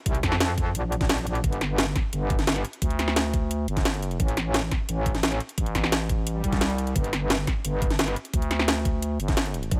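A metallic wobble bass leads this dark technical drum and bass excerpt, its aggressive, saturated FM tone thickened with chorus and overdrive and pumping under sidechain compression as it moves between G1 and F2 from the opening at 0.1 seconds. The mood is mechanical and tense, driven at 174 BPM in a straight 4/4 in G minor, with harmony shifting from Bb5 to G5, then Am at 4.2 seconds before returning to G5. Up front alongside it, an overdriven electronic kit snaps with a cracking snare and bright hats, while a knocking, tape-tinged electronic kick anchors the low end. At 2.8 seconds a growling, thick FM bass joins, adding a second sustained low voice between G1 and D2. A brief electronic swell appears in the background at 6.4 seconds, and the whole passage sits in a digital ambience.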